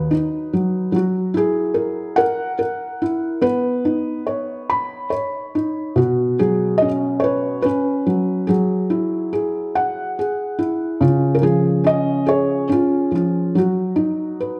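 Sleepy and gentle, this short passage of children's music drifts in a rubato 6/8 at about 48 BPM in dotted quarters, centered in B major and cut from a longer piece. A felt-muted upright piano plays solo throughout, its dark, thick-felt tone sitting up front with the soft clatter of its action clearly audible. The same theme is heard twice, restating at 6.0 s, with chords such as Badd9, Eadd9 and C# settling onto B/F# inside a moderate recital-hall reverb.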